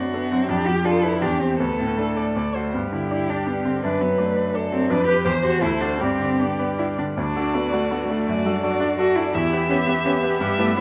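Cheerful and lively, this classical-period movement for piano quartet in triple time is cut from a longer piece and moves with a flexible rubato. A dark, expressive violin carries the melody with vibrato and portamento over a rich, soft-attacked cello second line, while a bright, brilliant grand piano sits up front with the accompaniment and a focused viola fills in quietly in the background. Close, detailed microphones capture the players in a moderate recital hall reverb, and a new section begins at 7.2 seconds.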